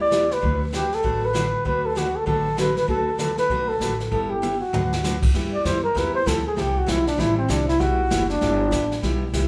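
A brisk, swinging groove in four, with lilting eighth notes, drives this cheerful western swing excerpt cut from a longer country piece. A jazz kit played with brushes, with dark cymbals, a medium-tuned snare and a boomy kick, keeps time alongside a woody, thumpy pizzicato upright bass on gut strings. A bright, full-bodied jumbo steel-string guitar supplies picked accompaniment, its fresh strings catching the occasional finger squeak. Up front, a breathy flugelhorn carries the melody with a soft attack, light vibrato and scooped notes, its whispered, intimate jazz tone sounding distant and roomy. A drum fill at 4.4 s leads into the second section, where the flugelhorn takes a solo from 5.3 s, and the band shares a large studio reverb as if playing live in one room.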